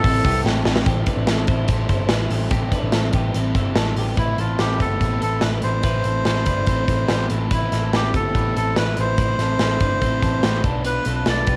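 A lightly reverberant home cassette recording of jangly indie pop in A minor at 144 BPM carries a restless, wistful mood, with a punchy, up-front big-room drum kit and a dark, round, foam-muted picked bass driving beneath a bright, twangy twelve-string electric guitar playing tape-echoed arpeggios and a crunchy overdriven guitar in the background, while barely audible analog keys sound only until 0.9 seconds, a drum fill arrives at 0.4 seconds, and a reedy, breathy melodica that opens briefly returns up front at 4.2 seconds to carry the melody over Am7 harmony that shifts to Bdim near the end of this cut from a longer piece.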